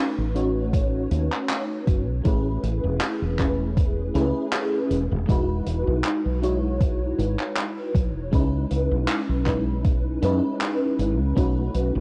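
A lush, detuned FM electric piano with a soft pad layer sits up front, its fast attack decaying into ensemble chorus and analog delay as it carries the chords from the opening moment. This is dreamy, faded vaporwave at 79 BPM in 4/4, set in E major and tuned to A4 = 436 Hz, with a light 16th-note swing. A dark, woody fretless bass enters at 0.2 seconds, round and punchy in its low register, followed by a natural-sounding big-band drum kit with handclaps and hi-hat at 0.4 seconds and a thumpy, overdriven electronic kick at 0.7 seconds. The harmony moves from B7 through Amaj7 and Emaj9 to C#m9 before returning to B7. A small room and light reverb frame the mix, while worn cassette tape lends a warbling pitch drift and a dulled top end to this short fragment of a longer piece.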